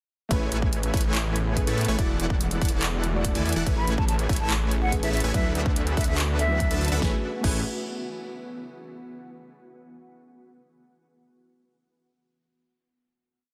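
Lush and playful, this short future bass piece at 143 BPM in A major rides a half-time feel through a drop built on a punchy electronic kick, a layered dance kit with a huge snare, claps, hi-hat rolls, ride and crash, and a thick, detuned saw bass up front, while full-bodied supersaw stabs throb out a rhythmic chord riff with a filter sweep, a soft, round pluck sits dark in the background with held chords and syncopated pushes, a shimmering, ethereal pad enters at 1.4 seconds very quietly, and an airy, hollow concert flute with vibrato adds short phrases from 3.8 to 6.8 seconds before everything settles on a final Amaj9 chord at 7.0 seconds in a dense, heavily limited, fairly dry mix where sidechain pumping and dub echo animate the stabs, pluck and flute.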